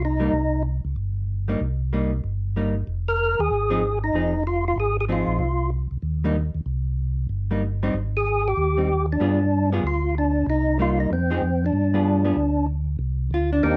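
A percussive, lightly overdriven tonewheel organ with key click and slow rotary swirl carries the bluesy melody in intermittent phrases over a round, dark organ bass and a clean, picked hollow-body jazz guitar comping through minor-key changes in this late-night, swinging soul jazz trio excerpt with light reverb.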